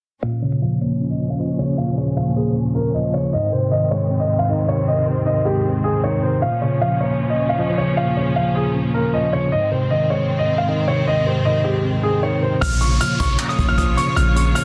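A dense, heavily limited modern master with little reverb and some lossy compression artefacts carries this eerie, hard-hitting trap piece in Bb minor at 155 BPM, felt in half-time and tuned to A4 = 438 Hz. Under a filter sweep, an intimate, up-front dark grand piano with audible action noise and delay plays the melody alongside a worn, slightly out-of-tune tine electric piano and a bowed studio string section with vibrato, each low-pass filtered as the chords move between Bb minor and Ab. At 12.6 seconds a deep, mellow 808-style bass, a distant, roomy brush drum kit with boomy kick, handclaps, hi-hat and rim click, and an electronic downlifter enter.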